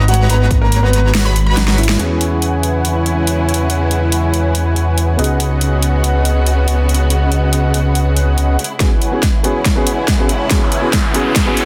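A dense, heavily limited modern mix with light reverb opens this emotional, bittersweet future bass passage at 141 BPM in a half-time feel, cut from a longer piece. It starts on a drop where a boxy concert grand piano carries the melody with dub echo and sidechain pumping, a lush, ring-modulated unison pluck sits in the background, a bold detuned polysynth riff runs throughout, and a fat, up-front analog bass with a moving notch anchors the low end over a big-room kit with a huge snare and metallic hats, plus a punchy electronic kick. From 2.0 s a soft, felt-muted upright piano with audible action noise and a distant, bowed symphonic string section take over the accompaniment over chords moving from E6 to C#7sus4 and back to E6, before a build-up from 8.8 s brings back the kick, filter sweeps across the polysynth, a drum fill and an electronic riser.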